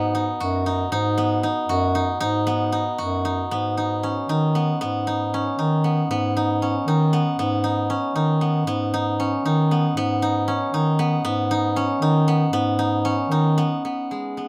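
The music moves in an uneven 5/8 metre at 233 eighth-note beats per minute with a straight feel, giving this contemporary chamber excerpt a pensive yet restless character. A steel-string zither, played with fingerpicks, supplies arpeggios in a ringing, silvery tone from G#3 to F#4, while a mellow bass clarinet carries the bass line in a classical style between F#2 and D#3. Set in G# minor and tuned to A4 = 439 Hz, the harmony opens on B and shifts to G# minor at 3.5 seconds, where a longer second passage begins. Both instruments sit up front in a close, detailed recording with little reverb, so the plucked strings and the reed's mellow tone come across intimately. The bass clarinet stops at 13.8 seconds, leaving the zither to ring alone until 14.5 seconds, where this fragment of a longer work breaks off.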